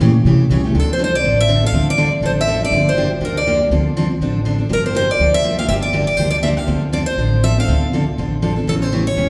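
A full-bodied jumbo acoustic guitar carries the picked melody from 0.8 seconds, sitting up front in this fiery, bittersweet excerpt of fast jazz manouche in D minor at 242 BPM with a swung feel. Beneath it, a bright, boxy parlour guitar with fresh strings and audible finger squeak picks the accompaniment through a Dm7 to Gm7 progression, while a thumpy, woody upright bass on gut strings plays pizzicato. The whole trio rings in the long, wet reverb of a church or concert hall.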